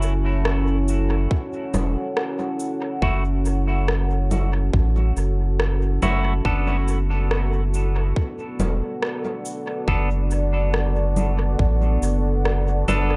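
Ambient dub in F# minor at 70 BPM with a swung 16th feel, this hazy, spacious excerpt moves from F#m7 to Bm7 at 6.5 seconds. A round, up-front sine sub bass and a deep, moody sawtooth pad with detuned unison, wave-folding, ring modulation, chorus and its own reverb sustain throughout, while overdriven electronic cabasa, rim click and congas drift through dub echo, joined by a tight, overdriven electronic kick from 1.3 seconds. From 3.0 seconds, bright, clean stabs from a semi-hollow electric guitar carry a warbly pitch drift and dub echo in an echo-heavy mix with little reverb.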